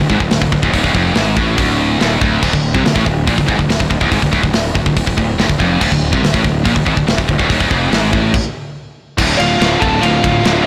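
A straight, driving 4/4 pulse carries this heavy, relentless heavy metal excerpt, where two bright high-gain rhythm guitars, one scooped, pick a low riff in the background over a growly, punchy fuzz bass and a tight, up-front acoustic drum kit with bright cymbals and a tight kick, all halting in a stop at 8.3 seconds before a dark, distorted lead guitar and a smoother, quieter overdriven second line enter together at 9.4 seconds, the whole blown-out recording sitting in a small room with light reverb.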